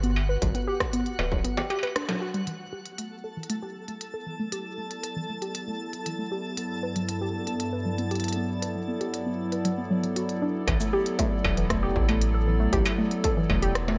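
Intricate and glitchy, this IDM fragment of a longer piece rides on a warbling, dusty pluck playing chorused, tape-echoed arpeggios, with an industrial drum kit of cabasa, smooth hats, rim click and struck metal, and a twinkling granular texture glinting above. A round sub bass and a distorted electronic kick drop out early and return together at 10.7 seconds, just as the sparkling granular layer stops. A hollow, flute-like pad enters at 2.5 seconds with sustained chords carrying 12-bit grit and sidechain pumping, and both it and the pluck move through filter sweeps in the middle section, all set in light digital ambience.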